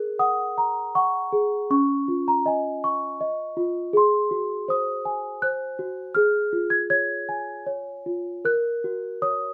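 A solo celesta carries this tender, innocent lullaby, its bell-like tone sweet and delicate, shaped by soft felt hammers that give it a mellow touch. The instrument sits up front in a boxy small room with light reverb, sounding close and intimate. Set in F# major and 3/4 time at around 80 BPM, the playing moves with a gentle rubato feel, ranging from C#4 up to G#6. The harmony drifts from F#add9 through C#add9 and G#7 to C#, settling home on F# at 8.4 seconds. This children's music passage lasts just 9.5 seconds and is cut from a longer piece, leaving a soft, innocent impression.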